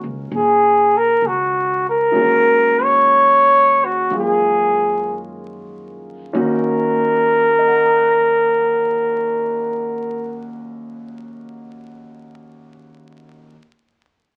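A clear, up-front flugelhorn sings a smoky, melancholic jazz ballad melody in Eb minor with soft attacks and scooped notes, over a warm concert grand piano with deep bass and a woody, thumpy pizzicato upright bass, the swung 4/4 pulse slowing within the 51-68 BPM range through the opening 6.3 s before the horn stops at 10.5 s and the piano carries on alone until 13.5 s, all heard through moderate studio reverb and the crackle of a very old 78 rpm record in this fragment of a longer piece.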